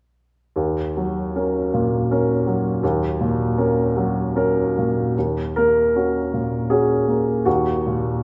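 Neoclassical minimalist piano in Eb minor, this brief excerpt cut from a longer piece carries a wistful, reflective mood at 78 BPM in 3/4, with uneven, rubato beats that let the time breathe. A solo upright piano plays from 0.6 to 8.2 seconds, ranging from Eb2 up to Bb4, its tone clear, woody and open with a long sustain. The instrument sits up front, yet it is bathed in a wet concert hall reverb with a two-second decay, giving the sense of a church or concert hall. The opening harmony rests on an Ebm7 chord, and the music moves from its first section into a second at 5.1 seconds. A faint mains hum lingers beneath the sound.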